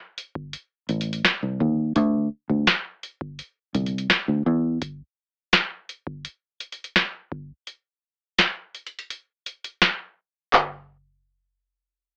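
A booming analog drum machine sets a straight 84 BPM groove in 4/4 for this late-night, sensual contemporary R&B excerpt, its deep kick, crisp snare, handclaps and metallic hats up front, with a short room on the snare, claps and hats. It is joined from 0.9 to 4.8 seconds by a dark, round, foam-muted fingered electric bass between A1 and E2, with the kick muted from 7.7 to 10.5 seconds, all under light reverb and a home-recorded cassette and AM radio sound tuned to A4 = 438 Hz.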